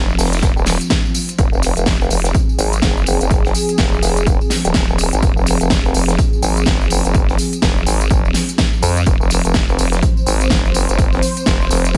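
A swung 4/4 groove at 125 BPM, with 60% swing on the 16ths, drives this aggressive, gritty bass house passage in F phrygian, cut from a longer piece and resting on a single F minor chord. Up front sits a vowel-sweep wobble bass, nasal and saturated, its sine core run through a resonant formant filter with chorus, overdrive and sidechain pumping, playing sustained low notes from the opening. Behind it, an airy, evolving pad built from detuned sawtooths and a noise layer holds bright sustained chords with a slow attack, long release, filter swell, chorus and the same pumping. The drums arrive in layers: a big-room dance kit at 0.1 s brings a huge snare, crisp hats and tambourine, a very quiet acoustic country kit adds a medium-tuned snare and hi-hat with natural studio-room tone at 0.2 s, and a punchy, tape-warm electronic kick lands at 0.4 s. A small room ambience clings to the produced, layered electronic drums.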